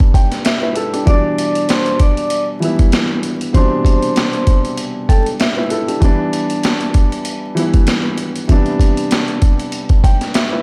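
A compressed, pitched-down sampler-style drum kit sits up front in this moody, gritty boom-bap hip-hop clip cut from a longer piece, its thumpy kick, high-tuned snare and swung hi-hat carrying the air of a large room. A dark, woody upright piano plays mellow, vintage-toned accompaniment through jazzy chords like Cmaj13, Em7 and Am11. A metallic, ringing vibraphone with a slow motor vibrato and boxy small-room sound carries the melody from 1.1 to 5.2 seconds, all within a dry, rough-edged mix dusted with vinyl crackle.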